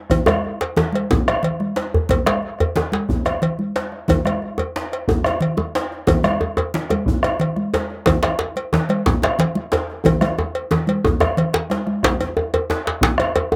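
Recorded outdoors with a light touch of reverb, this is a festive West African traditional drum ensemble. It moves at 121 BPM in a straight 12/8, with a powerful drive. A deep, dark bombo sits up front with a distant, large-room character. A bright, thin-skinned conga is also placed up front in a small room, and it stops at 12.0 seconds. A close, dry cowbell adds a metallic edge. Two djembes fill out the texture: one is medium-tuned with metal rattles and sounds far off, while the other is tight and cracking, heard up front in a small room. A drum fill runs from 10.1 to 12.0 seconds and leads into a brief closing section in this piece cut from a longer performance.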